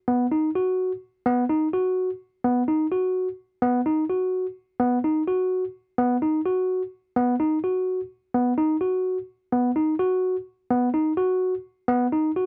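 A tine electric piano carries this short progressive instrumental entirely on its own, sounding from 0.1 to 12.5 seconds and staying within a narrow span from B3 to F#4. Its tone is clean and warm, heard through the instrument's built-in speakers and placed up front in the mix. The mood is brooding yet driving, set in an odd 5/8 metre with a straight feel at a quick 254 BPM counted in eighths. A light reverb surrounds the keys in an otherwise dry, close recording with a 1970s studio character. Cut from a longer piece, the passage plays as a single continuous section.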